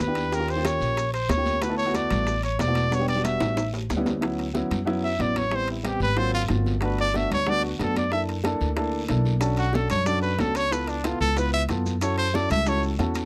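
Afro-Cuban jazz at a lively, sunny 185 BPM in D major, this excerpt features a punchy, forceful trumpet solo with scooped notes up front over a woody, growly pizzicato upright bass and a dark concert grand piano, while ringing metal-shell timbales, soft-handed congas and round, low-tuned bongos sit close and dry beside a raspy guiro and grainy maracas that drop out between 4.2 and 9.4 seconds, with a drum fill arriving at 3.4 seconds.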